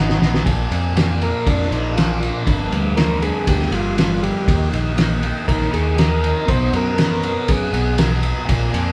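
An overdriven combo organ carries the melody in this hazy, trippy psychedelic rock excerpt, taking a solo from 0.5 seconds over a thick, double-tracked fuzz guitar riff treated with phaser, while a soft, flute-like tonewheel organ holds chords in the background with chorus vibrato and audible key click. A round fingered electric bass joins a muffled, lo-fi, gritty cloth-damped drum kit with a fat snare and dark cymbals that sits up front after a brief opening drum fill, with the band playing live in one room under light reverb. From 2.2 seconds a very quiet, string-like detuned drone fades in beneath the chords moving from Bb through Gm7 and Eb to B.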